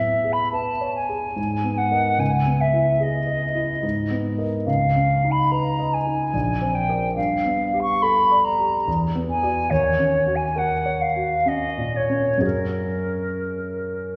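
A woody, pure-toned flute with gentle vibrato and soft attacks sings a wistful, mysterious melody over a dark, mellow grand piano with deep bass and audible action noise in this rubato impressionist classical excerpt in 3/4 and C# minor, drifting between 59 and 74 BPM through extended chords from Amaj9 to F#add9, all set in a wet concert hall that places the listener further back in the room.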